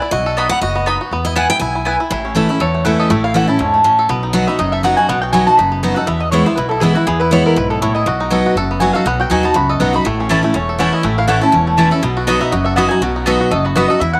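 Bluegrass with a lively, joyful swing, opening on a bright, full-bodied, up-front steel-string guitar solo over twangy banjo arpeggios and a thumpy, dark upright bass played pizzicato on gut strings. A mellow mandolin adds stabs early on and returns at 10.3 seconds, while a second, bright double-strung mandolin carries the melody from 2.6 seconds. Light reverb gives the whole band a small-room feel in this fragment cut from a longer piece.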